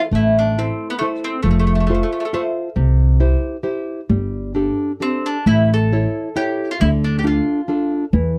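A lilting, swung 3/4 at 135 BPM carries this romantic, passionate Italian folk serenade excerpt in A minor, tuned slightly flat to A4 = 437 Hz, where a round, picked double-string mandolin sings the melody up front from 0.1 to 2.4 seconds and again from 5.0 seconds over dark, fingerpicked classical nylon-string guitar with audible finger squeak and a woody, growly pizzicato upright bass, all captured in a dry, close 1970s-style studio sound.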